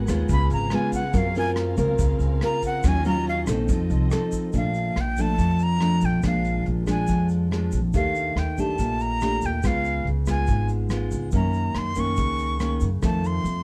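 A straight 4/4 bossa nova groove at 141 BPM comes from a vintage brush drum kit with a punchy kick, hi-hat and rim click, backed by a grainy egg shaker in the background and a woody pizzicato upright bass. A bright, fingerpicked nylon-string guitar sits up front with jazzy chords such as Gbmaj9#11 and Ebm9, while a dark, lush bowed string section hovers distantly until 4.5 seconds. A breathy, reedy jazz flute with vibrato and a clear chiff enters at 0.3 seconds to carry the melody, giving this sophisticated, sunny fragment of a longer piece its lift within a dark, warm production and moderate studio reverb.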